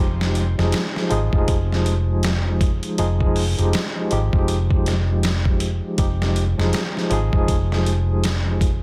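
A bright, barky tine electric piano sits up front with tremolo, low-pass filtering and tape echo over an Fm9 chord in this smoky, cinematic trip hop excerpt, joined by a dark, round hollow-body fingered bass with tube saturation and, from 0.2 seconds, a gritty, pitched-down sampler-style drum kit with a thumpy kick, medium-tuned snare and hi-hat re-recorded in a large room, all swinging in 4/4 within digital ambience and a dense, heavily limited master.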